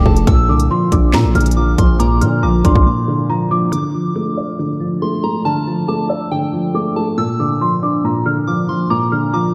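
A worn, slightly out-of-tune celesta opens with the melody through chorus, delay and a low-pass filter, over a felt-muted upright piano that sounds thick and dark with audible action noise, and a heavy, distorted 808-style bass up front, while a soft FM synth bell with a warbling chorus adds a gentle second line from 0.1 seconds. This tense, ominous drill hip hop excerpt in D minor moves at 139 BPM in a half-time feel, with a hard-clipped kick, sharp snare, crisp hats and handclaps set forward until the bass drops out at 2.9 seconds and the drums stop at 3.8 seconds. After that the celesta, piano and bell carry on alone in a lush hall reverb that leaves the mix dreamy and soaked.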